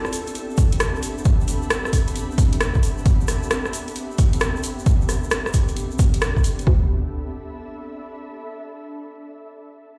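A punchy, tape-warm analog kick sits up front from 0.6 s, driving this late-night, skippy two-step UK garage fragment at 133 BPM with a swung sixteenth feel, while a layered electronic kit adds metallic hi-hats and rim clicks and a grainy, bright egg shaker ticks along beneath. Two ethereal, airy pads hold sustained Am11 chords and a higher noise-tinged texture, both detuned with ensemble chorus, built-in reverb and sidechain pumping, and a pad fades away over the opening section. At 6.7 s the harmony moves to Dm11 as a hollow, bouncy FM bass knocks in briefly, the whole cut set in a large studio reverb as if played on a big sound system in a bare room.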